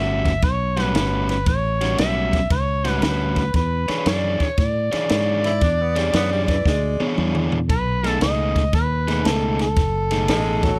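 An amplified, overdriven harmonica with light vibrato, scooped notes and tongue slaps leads this rollicking, gritty electric blues shuffle at 116 BPM in E mixolydian, riding over a crunchy, picked guitar riff, a round, punchy fingered bass and a dry, compact cocktail drum kit with dark cymbals and a high-tuned snare that plays a fill at 6.7 s, while a raspy, growling tenor saxophone adds a brief second line from 5.5 s, the band moving through A13, E13 and B13 chords in light reverb, all in a short excerpt cut from a longer piece.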